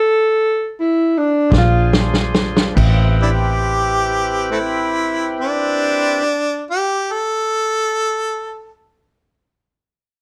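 A mellow, roomy tenor saxophone opens this soulful, smoky slow blues in 12/8 over a stop as the tempo slows, and a drum fill at 1.5 seconds brings in a dry, tight soul drum kit, a round, foam-muted fingered electric bass and a gritty, overdriven tonewheel organ holding sustained chords through a slow rotary speaker, before a harmonica with light vibrato, tongue slaps and scooped notes enters on the second line at 3.2 seconds, all within a dark, warm production with light reverb.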